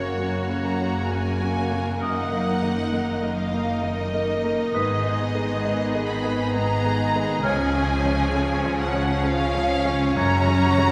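Cinematic orchestral music at 66 BPM in a rubato 3/4, moving and uplifting in F# major, cut from a longer piece: a lush, vibrato-rich violin section carries the expressive melody over a second, more distant violin line. A clear baby grand piano, intense violas, mellow French horns, a faint ringing thumb-plucked harp, smooth cellos and woody double basses fill out the accompaniment and bass. At 2.0 s a hollow, pure silver flute and a soft, roomy clarinet join with their own background lines, all set in the reverberant bloom of a recital hall.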